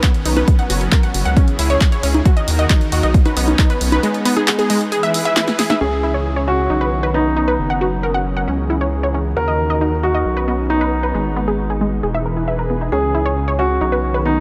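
This uplifting trance excerpt moves at 135 BPM in a straight 4/4, carrying a bittersweet yet driving mood in C# dorian over chords such as C#m, Badd9, F#sus4 and G#m. A lush supersaw pad of detuned sawtooth voices holds sustained chords with a soft attack and long release, low-pass filtered and pumping from sidechain, while a bright unison pluck with a noise layer and filter sweep spins arpeggios through tape colouring, sidechain pumping and digital delay. Beneath them, a gritty, resonant synth bass built from oscillator sync and saturated square and sine tones sits up front and pumps, entering just after the start. A dry, overdriven electronic kick punches hard until 3.7 seconds, and an analog drum machine of congas, handclaps, hi-hat and a punchy snare, with filtered hats, snare and percussion, plays a fill before stopping at 5.8 seconds. At that point a warm grand piano enters as a second line, its notes echoed by digital delay, all set in light reverb and digital ambience.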